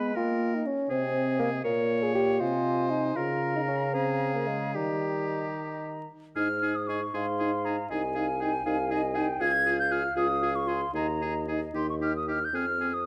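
An airy, hollow flute carries the melody from the first moment over a dark, up-front bassoon bass line, while a bright oboe adds a second line and a mellow clarinet and distant, roomy French horn fill in the accompaniment. It's a cheerful, lively classical-period movement for wind quintet in Ab major and 6/8, taken quickly at 73-82 BPM in dotted quarters with a rubato feel, the flute singing with vibrato and a crisp attack. Close, detailed microphones catch vinyl crackle within a moderate recital hall reverb, and the music shifts into a new section at 6.4 seconds before this short cut from a longer piece ends at 13.1 seconds.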